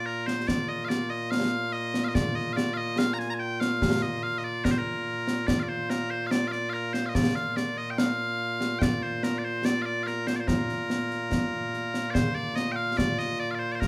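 A straight 2/4 pulse drives this proud, stirring stretch of Scottish pipe music, cut from a longer piece. Loud, piercing bagpipes carry the melody up front as one continuous solo line, and a concert snare and bass drum with bright cymbals join at 0.3 seconds. The band plays live together in one room under moderate studio reverb, and the tune moves into a new section at 12.1 seconds.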